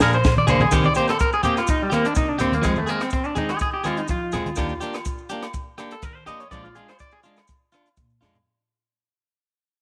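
Two slightly broken-up electric guitars sit up front in this bittersweet highlife guitar band excerpt: one twangy and fingered, playing accompaniment, the other picked and compressed, spinning arpeggios through a slapback echo. A clean electric guitar solo runs from 0.7 seconds under a fade-out, after a short drum fill on the compact cocktail kit with its high-tuned snare and punchy kick, while a woody pizzicato upright bass hums in the background over a Cm7, Fm, Ebmaj7 and Bb7 progression. Ringing agogo bells and grainy maracas sit far back, bright low-tuned congas played with soft hands drop out at 4.6 seconds, and a moderate echo-chamber reverb gives the band a warm studio glow.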